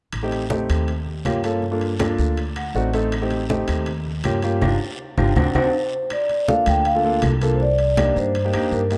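Mellow, soft-mallet vibraphone takes the melody at 5.6 seconds, ringing up front in this fiery, sophisticated Afro-Cuban jazz passage cut from a longer piece. A natural-sounding grand piano accompanies through rich extended chords and adds a fill at 2.4 seconds, while dark, woody pizzicato upright bass sits up front beneath low-tuned, thick-skinned congas, raspy dry guiro, distant metal-shell timbales and background claves. A drum fill and band accent lead into the second section at 6.1 seconds, and the recording has the rough feel of a home demo with light small-room reverb.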